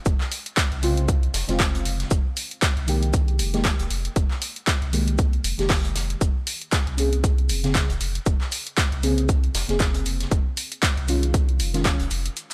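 Deep house in F minor at 117 BPM with a swung sixteenth feel, moody and hypnotic, built on a round, dark analog bass with saturation and sidechain pumping, an overdriven, punchy electronic kick up front, an analog drum machine supplying handclaps and hi-hat, and a background vintage kit of filtered hi-hat, shaker and snare, while from 0.8 seconds a soft, detuned chord stab with chorus, phaser and analog delay moves through Eb9sus4, Fm11 and Bbm9 in a small room ambience, this cut from a longer piece breaking at 12.4 seconds.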